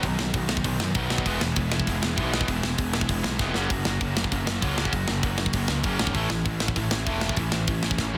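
Three picked electric guitars (one biting and overdriven, one tight and distorted, one high-gain and double-tracked) open together at 196 BPM, with a growly fuzz bass and an up-front, tight metal drum kit in a rowdy, rebellious punk rock burst cut from a longer piece. The guitars sit in the background of a dry, dense, heavily limited mix while the bass and drums drive the straight 4/4 feel through B, E, F# and A. Drum fills land at 3.4 seconds and again at 8.0 seconds, just before the drums stop at 8.1 seconds.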